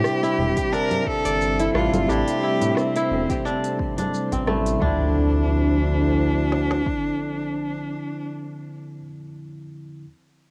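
A lightly swung 88 BPM groove in 4/4 opens this meditative, mystical organic downtempo fragment in D minor, with overdriven electronic congas, smooth hats, rim click and shaker running to 4.8 seconds, while a deep kick and woody snare carry on until 7.0 seconds beneath a smooth, up-front sawtooth synth bass. Over Am7 shifting to Dm9 at 4.8 seconds, a rich, bowed cello sings the vibrato-laden melody through grainy sampler grit and analog delay, a crisp fingerpicked kora ripples arpeggios, and a barky tine electric piano through a combo amp comps until 10.1 seconds. A dark, warbling tape-like pad pumps in the background, a faint sparkling granular shimmer twinkles early on, and a very quiet electronic impact lands at 4.8 seconds, all wrapped in cassette tape and a moderate spring reverb.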